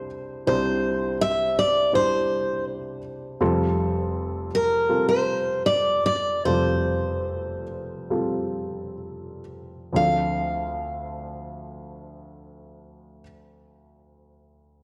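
Reflective and melancholic, this brief folk fragment from a longer piece pairs a picked steel-string acoustic guitar with a dark baby grand piano. The guitar carries the melody in a fairly high register, sitting up front with a warm, auditorium-like tone and a touch of slapback echo. Beneath it, the piano supplies accompaniment from deep bass notes up into the middle range, its mellow, intimate sound marked by audible action noise and short sustain. The pace gradually eases from 3.4 to 9.9 seconds as the harmony moves from Cadd9 to Fadd9, before a new section settles on Dm7. The guitar drops out at 13.2 seconds, leaving the piano to close on its own, all set in a moderate echo-chamber reverb that lends the pair a natural sense of space.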